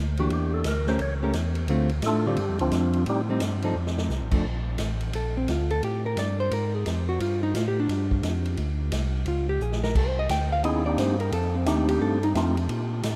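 A swung 174 BPM 4/4 groove from a punchy, acoustic big-band drum kit (crash, ride, hi-hat, snare and kick) drives this greasy soul jazz organ trio fragment, with a fat tonewheel organ bass line turning on a slow rotary speaker underneath. That bass organ takes the opening solo, while a soft, flute-like percussive organ with key click and fast rotary carries the melody, and at 4.4 s the music settles into Bb major as the clean, picked hollow-body jazz guitar steps forward for its own solo. Everything sits in a vast, echoing space with a long, huge reverb tail.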